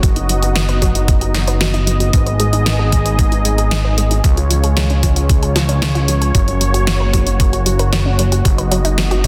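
This driving, moody synthwave excerpt opens with every part at once: a thumpy, sampler-style electronic kick, a layered pop drum kit with a fat snare and warm hats, a fat analog bass, a smooth detuned pad and a plucked synth arpeggio, all running from 0.0 to 9.3 seconds at 114 BPM in a straight 4/4. The sawtooth bass sits up front, thick and evolving with tube saturation and a fast attack, while the slow-attack pad holds sustained chords through chorus and sidechain pumping. In the background, the round, nasal pluck spins arpeggios with a bright, wave-folded edge, colored by chorus and tape echo, and a filter sweep runs across it for the full length. The harmony moves from B over F# through G#m, C# and F# before returning to B over F# at 8.4 seconds. Light reverb surrounds a dense, heavily limited modern master.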